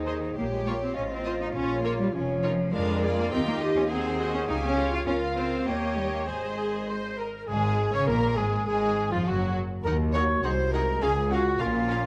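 Quick, cheerful and graceful classical-period orchestral movement at 102 BPM in 2/4, moving from Ab major to Db major at 7.5 s. Throughout, an intense, clear chamber violin section carries the melody over a clear clarinet and an airy, hollow flute on second lines, a smooth, rich violin section and a lush viola section in the background, mellow horn chords, and a bass of even, full-bodied cellos and intense double basses, all caught by close, detailed microphones in a moderate recital hall.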